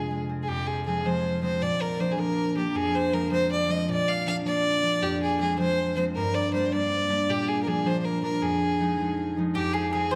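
A clear, smooth fiddle leads this spirited, wild slice of Celtic folk, bowed by a single player with light vibrato and an even tone that sits up front. Beneath it, a bright concert harp is fingerpicked in a lower register, its ringing notes also placed close to the listener and carrying the accompaniment from the opening second. The tune moves in a straight 6/8, with the harmony circling between minor and major chords before settling back home. Near the end, at 9.5 seconds, a bowl-back mandolin enters softly with a short picked second line, its double strings lending a warm, acoustic shimmer. A generous concert hall reverb surrounds the ensemble, giving the brief passage, cut from a longer piece, a spacious, airy setting.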